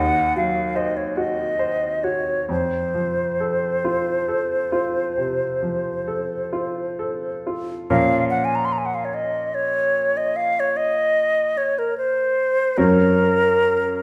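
A slow, rubato 12/8 lilt, counted at roughly 43 to 51 beats per minute in dotted quarters, carries this romantic classical duo in Bb minor, tuned to A4 = 437 Hz. The mood is yearning and elegiac. A concert flute sings the melody throughout, airy and hollow with vibrato and a crisp attack, close-miked and up front. A clear baby grand piano accompanies from start to finish, natural in tone with a short sustain, and also sits up front. Cut from a longer piece, the 14-second passage states the same phrase twice, its harmony moving from a diminished chord to F, then to Bb minor at 7.9 seconds and on to Gb, heard in the wet reverb of a recital hall.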